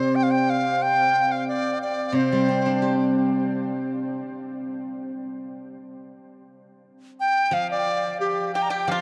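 A reedy large dizi leads this wistful, tender fragment of traditional Chinese chamber music, its buzzing membrane tone pure and up front, colored by vibrato and a soft attack. Beneath it, a steel-string zither played with fingerpicks supplies silvery, ringing accompaniment in a lower register, and the pulse drifts freely in a rubato 2/4 feel. Both parts fall away, the dizi returning near 7.2 seconds and the zither near 7.5 seconds. An erhu joins in the background at 8.5 seconds, a single bowed player with a smooth, boxy sound and gliding portamento, and a dry, percussive pipa plucked with fingerpicks follows at 8.6 seconds. A huge, wet reverb places the ensemble in a vast, echoing space, giving this short cut from a longer piece a spacious, wistful air.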